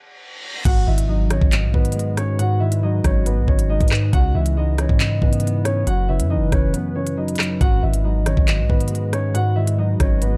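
Dark, dry production frames this menacing, cold drill hip hop excerpt at 138 BPM in half-time and G# minor, where a very quiet reverse cymbal and impact lead into the section at 0.7 seconds; a filtered, delayed concert grand piano carries a mellow melody over clean, compressed, fingered electric guitar accompaniment, a deep sustained 808 bass and an up-front drum kit with knocking kick, crisp hats, claps, rim clicks and crash; a moody detuned pad fades in at 1.6 seconds, a hollow, woody clarinet-like synth lead with chorus, phaser and vibrato sits in the background, and a brief break arrives at 6.7 seconds.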